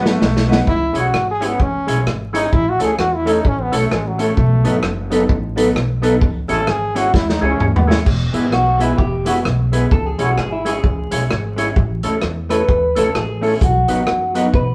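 Cheerful and upbeat, this ska excerpt swings along in four with a loose, bouncing eighth-note feel, and a vintage drum kit sits up front with a punchy kick, medium-tuned snare, rim clicks, toms and dark, rolled-off cymbals, opening with a fill and adding another just before 8.1 seconds. A bright, brilliant trombone carries the melody from the start with light vibrato, its solo running until 8.0 seconds. At 8.5 seconds an electric guitar at the edge of break-up takes over the lead, compressed and slightly gritty, bathed in spring reverb. Underneath, a dark, clean hollow-body jazz guitar with slapback echo supplies accompaniment, a percussive tonewheel organ adds stabs with key click through a slow rotary speaker, and a woody, thumpy upright bass on gut strings anchors the low end. The chords move through C#m, A and B7, and the whole band sounds like it is playing live in one room, with a wet studio reverb and vinyl crackle lending a vintage patina.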